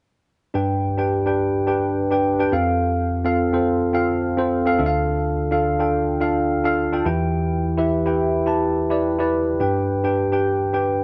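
Nostalgic and glossy, this short pop fragment rests on a single tine electric piano playing solo from 0.5 to 11.0 seconds. The piano sounds worn and slightly out of tune yet clean and direct, sitting up front with a lush chorus coloring its tone. It covers a broad span from D2 to A5 over a gentle 4/4 pulse with a light swing on the sixteenths. The harmony moves from G through F, Dm and Em before returning to G at 9.6 seconds, giving the passage a mellow, wistful drift. A light reverb surrounds the performance, and the top end stops at 10.7 kHz, lending the whole recording a hazy, vintage cast.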